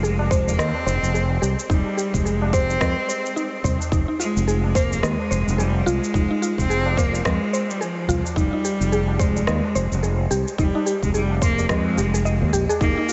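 Meditative and mystical, this organic downtempo passage moves at 108 BPM with a swung sixteenth-note feel, cut from a longer piece and drifting over Ab/F, Fm7 and Abmaj7/F. An intense, bowed cello carries the melody with vibrato and delay, up front beside a growly, punchy fretless electric bass with tube saturation, chorus and sidechain pumping, while a woody, round FM synth pluck plays mallet-like arpeggios. A tight electronic kick, electronic shaker and rim click set the groove, a very quiet high-tuned tabla enters at 0.2 seconds, and a huge ambient reverb soaks the mix in a dreamy, darkened haze.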